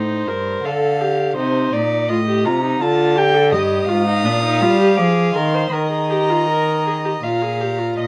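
In a steady, straight 3/4 at 82 BPM, this solemn, driving baroque-style fugue for string quartet, cut from a longer piece, sets an up-front cello bass with a nasal edge and a rich, lightly vibrato viola accompaniment under a dark, reedy violin second line, joined at 3.5 seconds by a second gut-strung violin carrying the melody, all played in period style through moderate studio reverb over a C minor harmony that moves toward Eb and Bb.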